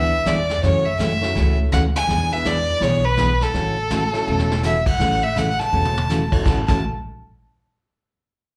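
Heard through a venue's PA with a light club reverb, this short live cut from a longer piece is cheerful, down-home western swing in A major at 165 BPM, with a swung 4/4 feel. A clear, focused fiddle carries the melody up front, bowed by one player with light vibrato and a touch of slapback echo. A bright, full-bodied dreadnought acoustic guitar is picked underneath, while a dark, mellow upright piano sits further back; both also carry slapback echo. A woody pizzicato upright bass anchors the low end as the harmony moves from E7 through F#m7 and back to E7 before settling on A6. A vintage brush drum kit enters at 0.3 seconds with dark cymbals, a punchy kick and a rolled-off top, adding fills around 4.3 and 5.7 seconds.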